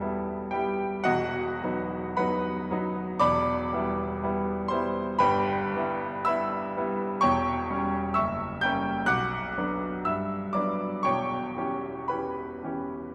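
A clear grand piano opens alone in E minor, setting a bittersweet, brooding tone for this romantic character piece in the classical tradition. The tempo sits slowly between 51 and 65 BPM in 2/4, and the rubato feel lets the time stretch and breathe. The instrument sounds present and up front, reaching from the deep E1 in the bass to G6 at the top. The harmony moves from E minor through B over E, E minor over G and a diminished chord on C sharp before F#7b9 pulls toward B minor at 9.1 seconds, followed by Gmaj7 and a return to the diminished colour. A long church reverb of 3.1 seconds surrounds the piano, giving it the resonance of a church or concert hall. The 13.1-second excerpt is cut from a longer piece.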